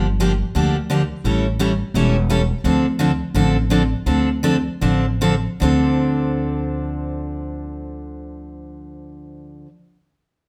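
A picked steel-string acoustic guitar sits up front in this short, fiery passage of acoustic string swing, its bright, full-bodied jumbo tone carrying the fresh-string sparkle and a touch of finger squeak as it plays accompaniment in a swung 4/4 feel. Beneath it, an upright bass is plucked on gut strings, giving a woody, dark, thumpy foundation. The harmony moves from Gm7 to A7 and settles on Dm7 at 2.6 seconds, where the pulse begins to slow down until 5.6 seconds, marking the shift from the opening section into a second passage. The pair is heard from further back in a studio with a wet reverb that lends the swinging, minor-key mood a sense of space. Cut from a longer piece, the bass falls silent at 9.6 seconds and the guitar rings on just past it to 9.7 seconds.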